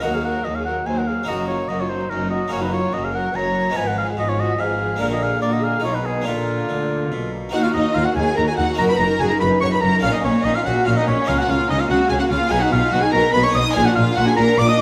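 A wet recital-hall reverb surrounds this stormy, dramatic concerto movement in a baroque style, and a layer of vinyl crackle sits over the sound throughout the short excerpt cut from a longer piece. At 144 BPM in a straight 3/4 in Eb minor, the warm oboe carries the melody up front with a smooth-topped, classical solo tone, joined on the melody by a lush symphonic violin section set lower in the mix. A second, close studio violin section plays a rich, expressive second line with vibrato. A full Flemish-style harpsichord with two sets of strings plucks the accompaniment beside a chamber viola section that stays in the background. A bowed chamber double bass section and an even, smooth studio cello section, also in the background, hold down the bass. The harmony moves from Ebm through Gb and Bb in the first half, then turns toward Bbm and a colourful Bmaj9#11 near 12.5 seconds before settling on Bb at 13.8 seconds.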